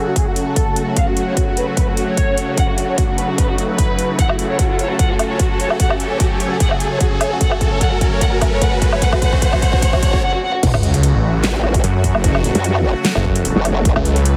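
Chaotic and menacing, this heavy wobble dubstep cut runs at 149 BPM in F# minor with a swung half-time feel, opening on a vibrato-laden studio violin section roughened by 12-bit sampler grit and delay, its low-pass filter sweeping through the build-up over a lush, phased supersaw pad and an ethereal, airy pad set back in the mix. A riser, a drum fill, a punchy electronic kick and a dubstep kit with a huge snare, handclaps, metallic hats, woodblock and crash push toward a brief break at 10.2 seconds. At the 10.6-second drop the violins stop and a wobbling, formant-filtered growl bass and a snarling, detuned saw bass surge up front beside a sub drop impact, the mix carrying a heavily compressed, radio-like sound with light digital ambience.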